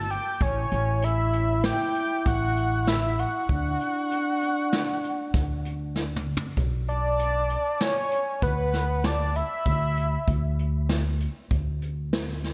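A bold, hollow sawtooth lead voiced with an added fifth carries the melody with chorus, vibrato and slapback echo until 10.6 seconds, over a veiled bucket-muted trombone second line that ends at 6.3 seconds, woody gut-string pizzicato upright bass and a vintage brush drum kit with a punchy kick and a fill at 6.0 seconds, in an intricate, brooding progressive instrumental excerpt in 5/4 at 97 BPM moving from A7 and D to Bm and Dsus2 in a small, lightly reverberant room.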